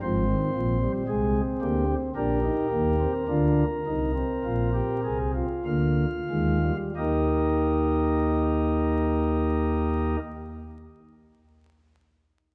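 A pipe organ on soft flute stops carries this brief excerpt alone, sitting up front with a romantic voicing that spans from a deep Ab1 to F5. It is a baroque-style four-part fugue in Eb major, cut from a longer piece, and its mood is joyful and stately at a measured 45 to 58 BPM in 4/4 with a straight feel. Over the opening 7.0 seconds the tempo slows as the harmony moves from Ab through Eb over Bb to Bb7, arriving on Eb at 7.0 seconds, where a new section begins. The organ sounds until 10.2 seconds. A wet church reverb lingers for about 2.4 seconds, and the dark, warm production carries a vinyl crackle.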